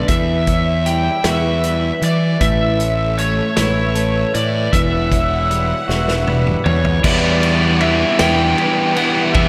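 An overdriven slide guitar sings an up-front melody over very quiet, distant bowed strings, a twangy chorused guitar and a ringing vibraphone in the background, and a round, fuzzed fingered bass in this cathartic, melancholic post-rock piece in E dorian at a slow 52 BPM in 6/8, with a loose indie drum kit with dark cymbals and a punchy kick joining almost at once and playing a fill from 5.9 s, before the twangy guitar drops out at 7.0 s and a bright overdriven guitar and a compressed fuzz guitar take up a riff on Em7, all set in a lush hall reverb with a big arena sound.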